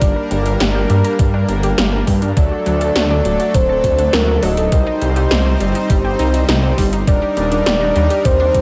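Moody and driving, this synthwave excerpt runs from 0.0 to 8.6 s, with every part playing throughout over a Gm, D, Cm, Ebmaj7 progression. A thumpy, tape-warm, sampler-style electronic kick is the loudest element, while 80s electronic pad drums add a gated snare and metallic hi-hats re-recorded in a large room. The detuned saw bass is thick and saturated, sitting up front with chorus and sidechain pumping. A smooth supersaw holds sustained chords that also pump with the sidechain, and a round analog pluck plays bright arpeggios in the background through chorus and digital delay. On top, a full, dark octave-layered synth lead carries the melody with vibrato, chorus and tape echo, all set in a light reverb.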